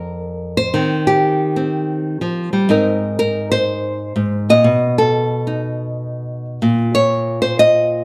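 A lone nylon-string guitar opens this short cut from a longer solo jazz piece, sitting up front with a small, fingerpicked sound. The mood is moody and smoky, carried by a lilting swing feel in four. Close, detailed microphones catch the instrument's acoustic character, set in a light reverb. The harmony moves from Fsus4 through Eb69 and Abadd9 to B7, landing on Bbm at 6.6 seconds. The guitar ranges from a low F2 up to Eb5 and plays alone throughout the 8 seconds.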